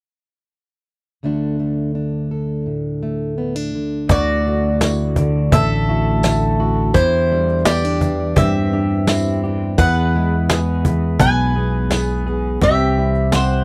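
A dry, close 1970s-style studio sound frames this pastoral, hopeful acoustic folk piece in D mixolydian at 84 BPM, where a full-bodied fingerpicked jumbo steel-string guitar plays alone from 1.2 seconds until 4.1 seconds, when a boxy picked swing-style acoustic guitar takes the melody over a round double-stringed mandolin line, a slightly broken-up lo-fi electric guitar playing arpeggios with harmonic tremolo in the background, an up-front fingered electric bass, a background brush drum kit with punchy kick, a snappy cajon struck with hard hands, and a jingly band-limited tambourine from 4.8 seconds, moving through chords from Dadd9 to Cadd9/E, E and C.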